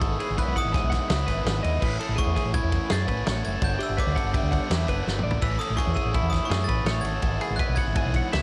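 A sparkling, bell-like glockenspiel melody rings over twangy, clean twelve-string electric guitar arpeggios, a crunchy double-tracked overdriven guitar riff, a round, hollow-body fingered bass and a loose, up-front indie drum kit with a fat snare and punchy kick, all together from the first beat of this intricate, wistful math rock and midwest emo passage at 166 BPM in 5/4, moving through Emaj9/G#, Amaj7 and Gmaj7, with a drum fill at 5.1 seconds, in a dark, dry production.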